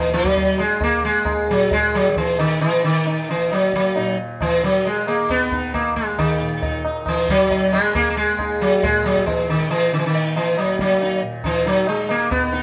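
The sitar and tanpura open together, the sitar's round, buzzing melody set up front over the tanpura's bright, shimmering drone in the background, with a low-tuned tabla joining at 0.1 s. This Hindustani classical passage in raga bhairavi on Eb moves at about 135 BPM in 4/4, introspective and full of longing, and gradually speeds up across its 12.6 seconds. The three players share one room with a wet studio reverb, the sitar's sympathetic strings ringing while the tabla strokes stay short.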